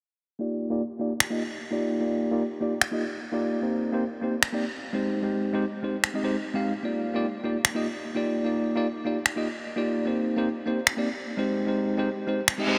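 A bell-like tine electric piano provides the accompaniment in this euphoric, bright future bass excerpt, entering at 0.4 seconds with clean chords that sit up front, as if heard through built-in speakers, shaped by a low-pass filter sweep and an analog delay. Its harmony moves through Ebmaj9, Cm7 and Abmaj7 in Eb major, tuned to A4 = 438 Hz, cycling twice over the short passage. Layered, tape-tinged electronic finger snaps join at 1.2 seconds, also close in the mix, marking a half-time feel at 149 BPM in 4/4 with a light swing on the sixteenths. A reverse cymbal arrives at 12.6 seconds as a brief electronic effect just before the cut. The whole mix is dreamy and soaked in a huge ambient reverb with a long 4.8-second tail.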